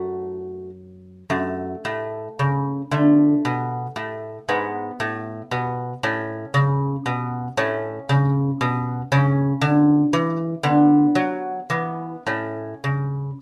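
Classical baroque-style dance for solo lute in 3/4, moving at 101-120 BPM with a rubato feel and a serene, radiant mood, opening in F# minor and settling into A major from 7.6 s. The fingerpicked lute sits up front with a delicate, warm tone from its gut and double strings, some octave-doubled, ranging from F#2 to F#4 through chords such as F#m, G#m, Aadd9 and Bm/D before closing on A. Close, detailed microphones capture it with little reverb and lossy compression artefacts in this short fragment cut from a longer piece.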